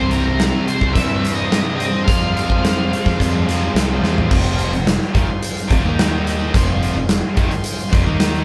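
A dark, fuzzed-out lead guitar with an octave tone opens this brooding classic rock excerpt at 107 BPM in a straight 4/4. It plays a short melody in F harmonic minor over a stack of picked, distorted rhythm guitars: a very quiet, overdriven sludgy part and two bright, tight riffing parts (one of them double-tracked) sitting in the background. A growling fingered bass with overdrive drives the low end, while a shouting, lightly overdriven tonewheel organ holds very quiet sustained chords through a rotary speaker, its key click audible. The huge, acoustic arena drum kit sits up front with a punchy kick, medium-tuned snare, bright cymbals and a pumping room sound. The lead drops out at 3.7 seconds, a drum fill lands at 4.0 seconds, and from 4.3 seconds the band settles into F minor. The harmony moves from C to Fm, then Eb5 and back to Fm. The whole band sounds like it is playing live together in one room with moderate studio reverb, and the tuning sits slightly below standard at A4 = 439 Hz.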